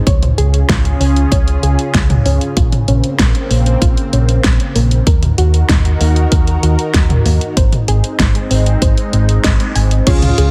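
Opening on a lush, detuned unison pad with chorus, phaser and sidechain pumping, this romantic, dreamy synthwave excerpt at 96 BPM moves through Db, Bbmadd9, Ebm and Ab over a dark, up-front picked electric bass, a punchy layered electronic kick and a pop kit with fat snare and warm hats, while a soft, round, nasal pluck plays chorused, delayed arpeggios in the background, a band accent hits at 9.4 seconds, and a smooth supersaw melody and glossy chorused polysynth stabs enter at 10.1 seconds in a dense, heavily limited master with light reverb.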